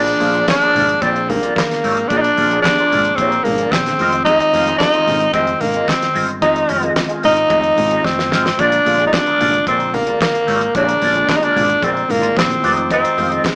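A raspy tenor saxophone sits up front in this driving, danceable disco excerpt, carrying the melody with a gritty edge, scooped notes and light vibrato over a smooth top. Beneath it, a mellow electric guitar plays clean, fingered accompaniment through wah and spring reverb, while a worn, slightly out-of-tune tine electric piano, lightly overdriven, hovers in the background. A round, dark hollow-body bass anchors the low end, and a dry 70s drum kit with a fat snare, tight kick, hi-hat and handclaps keeps a straight feel, joined by very quiet, low-tuned congas struck with hard hands. The harmony moves between Bb7 and Fm7, and a drum fill at 8.0 seconds pushes the groove back toward the opening chord. The band sounds like it is playing live together in a stone room with moderate reverb, heard through a small speaker.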